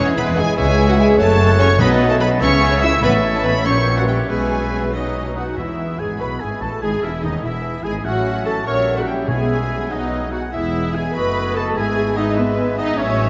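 A cheerful, spirited classical-period movement in a quick 6/8 at 97 BPM opens in E major with a focused, close violin section carrying the melody, joined on second lines by a clear oboe, a hollow flute section, a very quiet, lush second violin section and a distant clarinet. Smooth violas, tight French horn chords, a cello section in the background and a bowed double bass section fill out the texture, while a mellow bassoon adds accompaniment until 5.4 s. Very quiet timpani with hard mallets sound three short times, and a trumpet section enters with background stabs at 5.6 s, all within a vast, echoing cathedral reverb.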